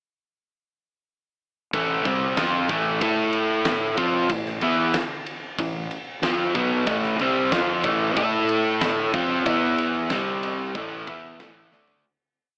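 A straight 4/4 groove at 93 BPM drives this brooding classic rock piece in A minor, where a dark, double-tracked overdriven electric guitar plays an up-front power-chord riff from 1.7 s, doubled by a growly fuzz bass on simple roots and fifths over a huge arena drum kit with a fat snare, punchy kick, ride cymbal and toms. A metallic, band-limited cowbell pattern sits in the background from 6.9 s, and the harmony moves from A minor through E5 and C5 to A5 as the piece fades out from 9.5 s, closing on a drum fill at 11.7 s. The whole mix carries an AM radio character with moderate studio reverb.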